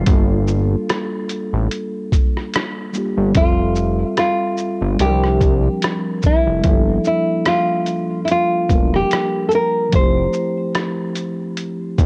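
A lazily swung 4/4 groove opens this hazy, reflective lo-fi hip hop fragment, with a muffled, pitched-down sampler-style kit of thumpy kick, hi-hat, rim click and shaker sitting up front beside a fat, detuned sawtooth bass with a filter sweep. A mellow tine electric piano, softened by cassette tape and a low-pass filter, plays the jazzy minor-ninth and suspended chords throughout. At 3.4 seconds a full-bodied, fingerpicked nylon-string guitar takes the melody through the same tape haze until 10.7 seconds, all wrapped in light digital ambience with a homemade cassette character.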